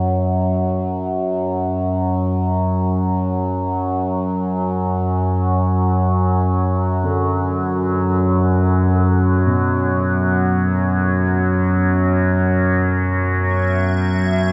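Dark ambient drone in free time, desolate and unsettling, heard as a short cut from a longer piece. An overtone-sweeping drone sits up front for the full 14.5 seconds, a resonant blend of sawtooth and sine with moving overtones, slow attack and long release, thickened by chorus and its own reverb. Beneath it, a dark grand piano plays low arpeggios between B2 and D3, mellow and boxy in the background, fading in across the whole passage through a diffuse ambient delay. Near the close, at 13.7 seconds, an icy glass pad enters on a single high E5, crystalline and airy with a detuned unison and a noise layer, bright against the murk. The harmony holds on D7/F# before shifting to Esus2/F# at 13.4 seconds. A huge, wet reverb and a dark, warm production shroud the whole sound.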